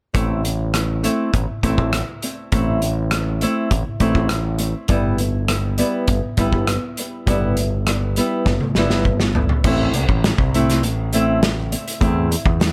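A dry, close-up sound frames this brooding, angsty quiet-loud alternative rock excerpt, where a boxy fingerpicked steel-string acoustic guitar with tape echo plays arpeggios over a growling, overdriven picked electric bass and a loose indie drum kit with a punchy kick and pumping small-room ambience, until a drum fill from 8.5 to 9.6 seconds carries the piece into a new section.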